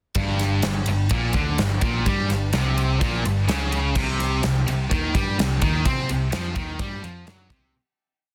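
Hard rock at 127 BPM, powerful and energetic, built on a single riff moving from G5 to C5 at 4.0 seconds, with a gated 80s drum kit up front (punchy kick, medium-tuned snare, bright cymbals, airy big-room sheen), a growly, amped picked electric bass driving eighth notes that double the guitar riff, three picked single-note guitars (a dark, overdriven, sludgy one in the background, a tight distorted one, and a very quiet, scooped, high-gain double-tracked one), all in a small room with a dense, heavily limited modern master and a fade-out from 5.8 to 7.7 seconds.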